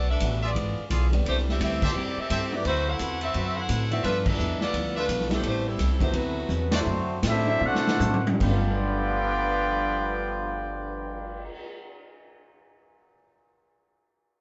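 Recorded as a band playing live in one room with moderate studio reverb and a top end that stops short of 7.8 kHz, this energetic, brassy big band swing excerpt from a longer piece slows down midway. An edgy saxophone section carries the melody over a woody, up-front pizzicato upright bass, a boomy big-room drum kit, a clean hollow-body electric guitar and a warm concert grand piano in the background, while a brilliant trumpet section adds stabs until the saxophones stop at 6.7 seconds. A vintage trombone section enters on a second line at 6.1 seconds, and a clear trumpet section takes the melody at 6.7 seconds, as band accents and drum fills mark the turn from Am7 and D13 toward a closing G9.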